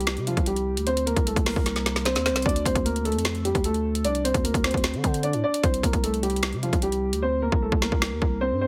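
Trap hip hop at 151 BPM in a half-time feel, dark and brooding, cut from a longer piece. A worn, boxy baby grand piano carries the melody up front through a low-pass filter, its action noise audible and its notes sustaining long over chords that move from C5 to D5 and back to C5, while a growling, buzzy 808-style bass decays beneath. The electronic trap kit hits with a hard-clipped kick, woody snare and metallic hats, plays a fill at 1.7 seconds and mutes its hi-hats from 7.2 seconds, all within a dry, heavily compressed radio-style sound.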